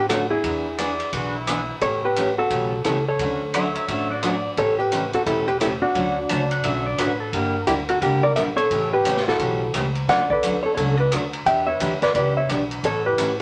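A moderate club reverb surrounds this cheerful, swinging western swing excerpt in D major at 174 BPM, where an up-front, dark and clean hollow-body jazz guitar carries the melody over woody pizzicato upright bass, a bright picked dreadnought acoustic with audible finger squeak, and a distant, roomy big-band kit with boomy kick, ride, hi-hat and rim click. A twangy pedal steel with volume swells adds a second line from 0.8 to 7.6 seconds, and a breathy alto flute with vibrato takes up its own line in the background from 4.6 seconds. The changes move through E7, A7 and Dmaj7, touch a Gm6, and close on Aadd9.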